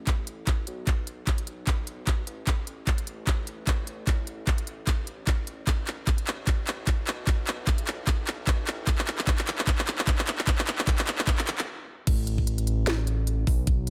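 Lightly reverberant, this playful, euphoric future bass clip runs at 150 BPM in half-time with a 55% swing on the sixteenths, setting an up-front knocking electronic kick and a trap kit of sharp snare, crisp hi-hats, handclaps and crash cymbal over a fat, detuned sawtooth analog bass that pumps under sidechain between A1 and B1, with a drum fill driving the build-up until a brief stop at 11.7 seconds gives way to the drop at 12.1 seconds.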